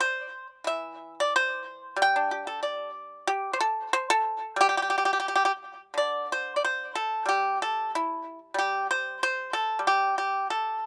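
Pastoral and elegant, this short cut from a longer Chinese traditional piece features a solo pipa in G zhi mode, played with fingerpicks in a rubato 2/4 around 86-97 BPM, its dry, percussive tone sitting up front with a slapback echo in an outdoor recording with little reverb, moving from an opening section into a second one at 5.9 seconds.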